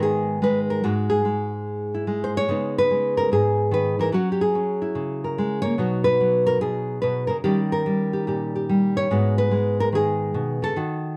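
A fingerpicked nylon-string guitar opens this late-night, smoky solo jazz excerpt and carries it alone from 0.0 to 11.2 seconds. The tempo sits at 145 BPM in 4/4 with a swung eighth-note feel, and the music is in G# minor. The guitar has a classical, acoustic tone and sits up front, moving through G#m7, G#5, C#7sus2, F#7, Badd9 and D#7 before returning to G#m7 near 9.1 seconds. Its range reaches from G#2 up to C#5. A moderate studio reverb and a dark, warm production lend the short passage its smoky, late-night atmosphere.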